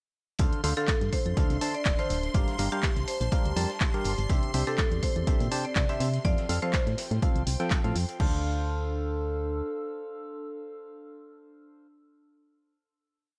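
A bittersweet, soulful piano house piece in D minor at 123 BPM opens with a punchy, up-front electronic kick in four-on-the-floor, a dry analog drum machine's hats, claps and crash, and a very quiet, muffled looped breakbeat from a lo-fi vintage drum kit, all under a round, dark FM bass line, hollow, nasal organ stabs with chorus and delay, a shimmering vintage string machine holding a high violin note, and a warbling, nostalgic tape-like pad, with sidechain pumping on the bass, organ, strings and pad, while a woody, close-miked marimba with hard mallets plays short phrases from 0.8 to 6.8 seconds before the drums drop out at 8.3 seconds and the organ and pad linger over a final Dm7 chord to 12.0 seconds.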